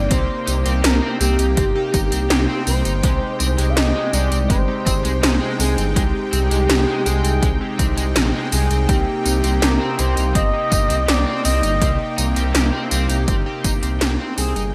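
The recording has a bright, 1980s-style digital sheen, set in a moderate plate reverb, and this short cut from a longer synthwave piece carries a cinematic, nostalgic mood in a straight 4/4. An expressive synth lead carries the melody with a smooth, dark sawtooth tone, chorus, vibrato and digital delay, while a soft supersaw holds full-bodied, evolving chords in the background, pumping under sidechain. Up front, a deep, rumbling detuned saw bass beats and pumps as well, joined by a punchy, overdriven electronic kick and 80s electronic pad drums whose gated snare, metallic hats and tambourine sit close and overdriven. A crunchy overdriven guitar plays a picked, double-tracked riff with analog chorus and delay, and a glossy chorused polysynth adds retro pulse-wave stabs in the background. The harmony moves from Cm7 to Abmaj7 at 3.0 seconds and back to Cm7 at 8.9 seconds before the whole fades out from 12.8 seconds.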